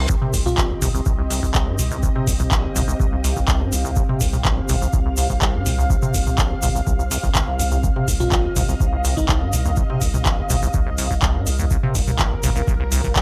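Acid house at 124 BPM in C minor, this short excerpt cut from a longer piece feels trippy and raw, sitting on a single C minor chord throughout its 13.2 seconds. A squelchy, resonant square-wave acid bass riff drives the groove with a filter sweep, while a round, dark analog bass sits in the background beneath it with sidechain pumping. A deep, tape-warm electronic kick arrives at 0.1 seconds alongside a grainy, close egg shaker, and a booming analog drum machine sits up front with handclaps, metallic hi-hats and toms. Lush, vintage string machine chords and an airy, breathy pad treated with chorus and phaser sustain overhead, both shaped by sidechain pumping. A bell-like, sparkling FM electric piano with chorus, cassette tape colour and analog delay adds brief melodic touches, returning at 8.2 seconds, and a very quiet reverse cymbal and riser appears at the edges. The dry, gritty hardware sound gives the whole track a rough, hands-on character.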